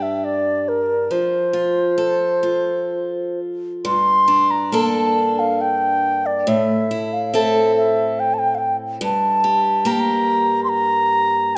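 A pure, woody baroque flute with vibrato and a soft attack sings a longing, haunting Celtic slow air in a free, rubato 3/4 over a bright, boxy parlour-style picked steel-string guitar with fresh strings, both close and present in a moderate concert hall reverb, in an excerpt whose harmony moves from Gm and F to a Gmadd9 at 3.8 seconds.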